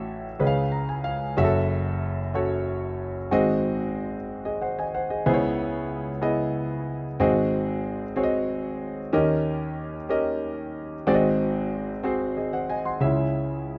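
In a steady 6/8 with a straight, unhurried dotted-quarter pulse, this solemn, soulful gospel fragment is carried entirely by a solo concert grand piano. The piano sounds clear and natural, with a deep bass and an up-front presence that fills the range from its low register to its upper notes. A short piano fill opens the passage at 0.4 seconds over a C#7 before the harmony settles into F#m7. From there the chords move through G#7, C#m7, G#7 again and D#7, returning to G#7 and resolving on C#m at 13.0 seconds. A moderate studio reverb gives the instrument some air within a rough home-demo mix, and the excerpt is cut from a longer piece.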